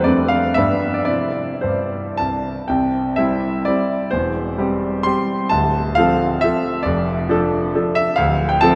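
Drenched in a vast cathedral reverb with a long, echoing tail and a softened top end, this short classical cut opens on a smooth, vintage grand piano placed up front. The piano plays alone as a romantic triple-time dance in C major with dotted rhythms, moving with graceful, rustic rubato between 100 and 145 BPM. It spans the low bass to the upper treble, shifting from a brief opening phrase into a second section at 2.7 seconds that dwells on D minor colours.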